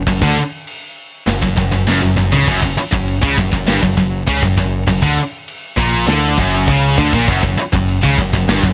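A growling, overdriven electric bass opens this short heavy metal cut at 0.0 seconds, picked up front with a bright, direct-and-amped edge, and the rest of the band crashes in a moment later at 0.1 seconds. The mood is aggressive and heavy, moving at 100 BPM in a straight 4/4 and centred on F#. Three high-gain guitars play the riff in the same low register: one distorted part sits up front, a second sits in the background, and a scooped, double-tracked layer lies very quietly underneath, all of them picked with a bright bite. An acoustic metal kit of crash, kick, snare and toms plays in a studio room with a mid-forward, rolled-off character, a tight kick and a medium-tuned snare. A drum fill between 1.9 and 2.5 seconds breaks up the groove, and the passage runs as one continuous section to 8.7 seconds, clearly lifted from a longer piece.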